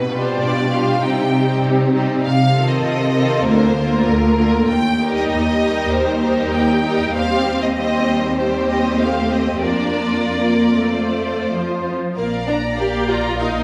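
Lively and graceful, this quick classical-period movement for string orchestra in Bb major at 98 BPM sets a focused first violin melody over an up-front cello bass, with a smooth, even second violin line and expressive viola accompaniment marked by portamento, while a clear double bass section enters only at 12.2 seconds for the closing Bb chord, all heard through a recital hall's reverberant glow in this passage cut from a longer piece.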